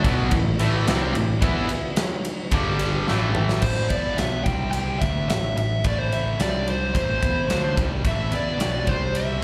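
Hard rock with a heavy, menacing mood at 109 BPM in A dorian, caught live through a venue's PA with a light recital-hall reverb, where three bright picked guitars (a cranked stack, a double-tracked distorted electric and a tight distorted one) drive the riff in the background with slapback echo, the tight and double-tracked guitars dropping out at 3.6 seconds just after a drum fill, as a dark, smooth overdriven lead guitar takes the melody up front over a growly, punchy picked bass and a big acoustic kit with a fat snare, punchy kick and pumping room sound.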